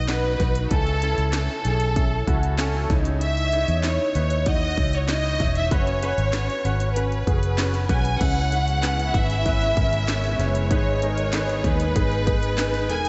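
A lush, vibrato-rich violin section carries the melody up front from the opening, over a clear concert grand piano with audible action noise and an ensemble chorus, and a dark, round, foam-muted electric bass. A punchy electronic house kit of crisp hats, cracking snare, handclaps, kick and crash joins almost at once, and this anthemic, piano-driven pop excerpt, cut from a longer piece, sits in a dreamy mix soaked in hall reverb with a softened top end. At 8.2 s a soft-attack studio string section enters in the background with sustained sul tasto chords, adding a warm layer through to the end at 13.1 s.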